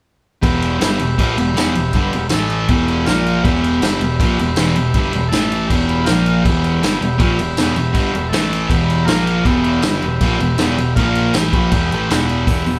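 Garage rock with a menacing, gritty edge, this short cut from a longer piece drives along at 159 BPM in straight 4/4, centered on E minor. A fuzz-drenched, double-tracked guitar sits up front with a compressed, distorted riff in the low register, circling Em and dipping briefly to A5 and A#5 chords. Behind it, a buzzy overdriven combo organ holds sustained chords higher up, and a transistor organ fill cuts in at 5.7, 8.7 and 11.3 seconds. A dark, round picked electric bass growls with overdrive in the background, while a vintage acoustic drum kit, punchy in the kick and dark in the cymbals, pushes forward with crash, hi-hat and a medium-tuned snare. All four parts play together throughout, caught with light reverb as if the band were playing live in one room.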